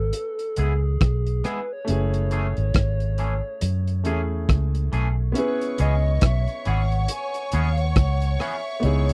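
A dry, close, 1970s-style studio sound frames this bittersweet, longing lovers rock reggae excerpt in C# minor at 69 BPM, with a swung sixteenth-note feel and chords moving from C#m7 to F#m9 and back. A muffled, gritty drum kit with a tight kick, hi-hat and rim click sits up front beside a dark, round, foam-muted fingered bass, while a clear grand piano with short sustain accompanies a reedy, woody FM lead whose warbling melody is coloured by chorus, phaser and tape echo. A twangy, clean electric guitar adds stabs from 0.6 seconds, and at 5.4 seconds a bowed string section with sul tasto vibrato and slapback echo enters as a smooth, intimate second line.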